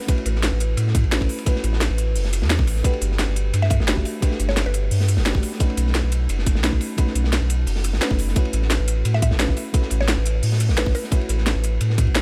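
A dreamy, warm mix opens this short cut from a longer liquid drum and bass track, moving at 174 BPM in a straight 4/4 over chords of A69, Gmaj7 and B9. A tight, tape-warm electronic kick and a layered kit with a cracking snare and crisp hats sit up front, while a second, gritty breakbeat kit with dark, rolled-off cymbals adds a small-room crunch, and a round sine sub bass enters at 0.3 seconds. A mellow FM electric piano, coloured by chorus, phaser and 12-bit sampler grit, carries the harmony throughout, as a woody, percussive synth pluck with delay drifts in the background with brief melodic phrases between B4 and E5.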